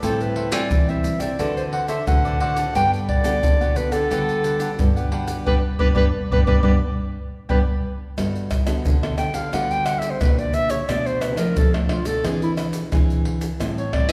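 Festive and sunny, this samba and choro fragment in G major moves at a straight 88 BPM, with a mellow, classical-style clarinet carrying the melody up front over a fingerpicked nylon-string guitar bass, a warm nylon-string guitar accompaniment and a crisp picked cavaquinho that drops out at 7.6 seconds. Egg shaker, tight surdo, pandeiro and tamborim, played with hard hands, sit up front with a compressed, saturated punch, and the band hits accents and a drum fill before the clarinet takes a solo from 8.2 seconds. The whole ensemble rings in a wet recital hall reverb, as if played in a church or concert hall, with a harmonic turn through Bm7b5 and Eaug7 near the close.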